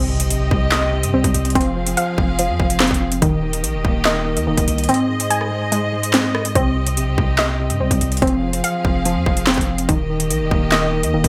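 A dark, ominous drill hip hop excerpt in a half-time feel, where a very quiet electronic impact opens the track, a mellow tine electric piano accompanies while veiled, muted strings sustain chords, a detuned, lo-fi sawtooth pluck spins chorused, delayed arpeggios, a deep sine 808 bass holds long notes, and an overdriven, up-front drill kit with hard-clipped kick, sharp snare, metallic hats, claps and rim clicks enters at 0.2 seconds, its kick dropping out from 4.9 to 6.6 seconds, all within a bright 1980s-style digital sound.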